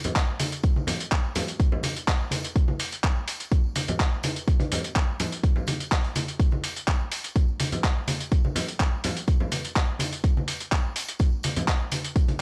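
Dry, gritty cassette-tape sound frames this groovy, funky house excerpt cut from a longer piece, where an overdriven, compressed soul sampler-style kit of handclaps, hi-hat and tambourine pumps against a punchy, layered electronic kick that enters at 0.2 s with a large-room sheen, while ringing tambourine and hard-handed congas pulse from a small room.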